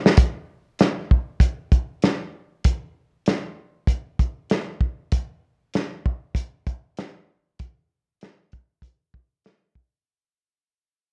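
A drum fill opens this short cut from a longer gritty, tough hip hop piece, then an acoustic soul kit of hi-hat, kick and medium-tuned snare settles into a swung 16th-note feel from 0.1 to 9.9 seconds. The kit sits up front with a dark, smooth character, a tight kick and a rolled-off top, captured in a small room with moderate studio reverb. The whole recording carries a worn, warbling cassette-tape quality with pitch drift, and it fades out across the passage until 10.1 seconds.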